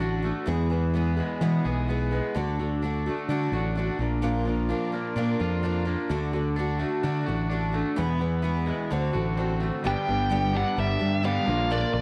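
A straight 4/4 pulse at 128 BPM drives this open-road rock excerpt in D lydian, with an up-front fingered electric bass anchoring a shimmering, octave-doubled twelve-string acoustic guitar and a twangy electric guitar riff at the edge of break-up, while a very quiet, intimate chamber string section holds soft-bowed chords until 9.8 s. The harmony moves through E, D, Bb and D7 before shifting to G, where a bluesy, distorted lead guitar enters at 9.9 s with a short melody high in its range. Light reverb and a worn, warbling cassette-tape pitch drift give the recording a warm, aged character.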